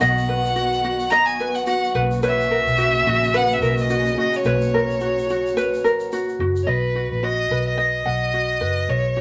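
Swung sixteenths give this easy-going, heartfelt acoustic pop fragment its lilt, as a rich, smooth bowed violin with vibrato carries the melody up front over a bright, fingerpicked ukulele, a round, foam-muted electric bass, a veiled con sordino string section holding distant sustained chords until 6.6 seconds, and a grainy egg shaker in the background that drops out at 6.7 seconds, with the mix set in a moderate studio reverb and a rolled-off top end.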